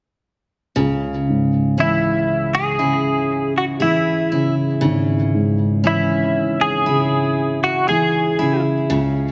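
A bright, twangy clean electric guitar carries the melody from 1.8 s through an analog chorus, over a dark, woody upright piano and a picked steel-string acoustic guitar whose arpeggios, marked by finger squeak and delay, begin together at 0.8 s, giving this fragment of a longing, melancholic pop ballad a wet scoring-stage reverb.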